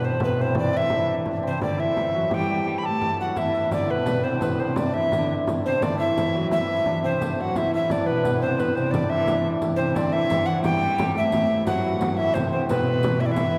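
A 6/8 pulse at 115 BPM, counted in dotted quarters, drives this mysterious medieval dance, which gradually speeds up over its 13.6 seconds, cut from a longer piece. A breathy, reedy alto recorder sits up front carrying the tongued, vibrato-touched melody with audible chiff. Beneath it, a shimmering hammered dulcimer in the background and a bowed, fretted viola da gamba with a soft attack and floating, ringing tone trace second lines over a very quiet, nasal harmonium drone. A close, dry frame drum keeps the beat, joined at 3.4 seconds by the bright jingles of a riq played with hard hands, all washed in a long, wet church reverb.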